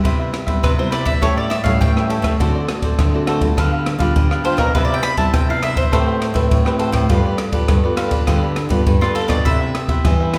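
A straight, even four-beat pulse drives this playful, sunny samba and choro passage, cut from a longer piece. A compact cocktail drum kit sits up front, its punchy kick, smooth ride cymbal and rim clicks dark in tone and set in a small room. Beneath it, a fingerpicked nylon-string guitar supplies a warm bass line, while a second, brighter fingerpicked nylon-string guitar and a crisp, mellow cavaquinho fill in the accompaniment. From 0.6 s a picked bowl-back mandolin takes the spotlight, its double strings giving the lead a warm, doubled voice over chords that move from Cmaj7 through A7, D7 and G7 before settling back on Cmaj7. The whole ensemble carries a moderate reverb that suggests a church or concert hall.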